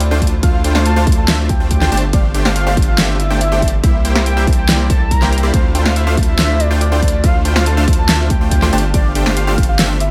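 A half-time 4/4 groove at 141 BPM drives this emotional, lush future bass excerpt in D minor, with a punchy, layered electronic kick and a pop drum kit of fat snare and bright hi-hats sitting up front. Underneath, a saturated sub bass, deep and thick with a sine core, holds the low end from G1 to D2 and pumps with sidechain compression. A detuned sawtooth supersaw stab plays a bright riff across A3 to A5, its filter sweep and pumping adding motion from 0.1 seconds. The melody comes from a velvety synth lead layered with a sub octave, thickened by chorus and tremolo and trailed by dub echo. Very quietly beneath it all, a floating studio string section sustains soft-edged bowed chords through Dm7, G9sus4 and C7 under a light reverb.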